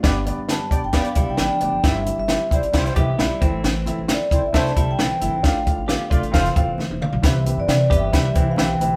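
A straight 4/4 groove at 133 BPM drives this uplifting, uptempo 1960s-style soul clip, cut from a longer piece, with a compact cocktail drum kit up front, its high-tuned snare and punchy kick sounding dry and natural alongside hi-hat and toms. Woody pizzicato upright bass on steel strings and a warm baby grand piano accompaniment underpin the groove, while very quiet, low-tuned congas with a thick skin add soft-handed texture. From 0.5 s a vibraphone played with medium mallets and the motor off carries the melody in a metallic, ringing voice, joined by a mellow, loosely played horn section with light vibrato and a smooth top on a second line until 6.5 s. A clean, compressed electric guitar recorded direct picks a riff through spring reverb, and the chords move from G through C/G, Am, Dm/A and F. After a drum fill, a very quiet tonewheel organ enters at 7.2 s with sustained Cmaj7 chords, its slow rotary speaker, chorus vibrato and key click heard as the band, playing live in one room, rings in a wet studio reverb.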